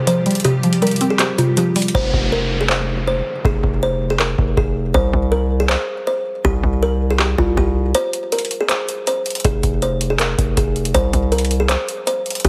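The distorted 808-style bass sits up front in this menacing, hard-hitting trap excerpt in F minor, arriving at 1.9 seconds with a saturated, aggressive sine tone, a noise layer and a fast, decaying attack. Beneath it, a booming analog drum machine at 160 BPM in a half-time feel sets handclaps, hi-hat and a deep kick up front, its metallic hats and tape-warm grit prominent, though the hi-hats drop out until 7.9 seconds, where a brief break lands. A plucked, woody, airy kalimba carries the melody throughout. In the short opening, a round, percussive FM synth pluck with chorus and a blurred, evolving granular cloud pad with built-in reverb sit under a Csus4 chord before both fall away at 1.9 seconds. An electronic downlifter adds tension as the harmony moves between Fm and C5, and the whole mix carries a heavily compressed, radio-like digital ambience.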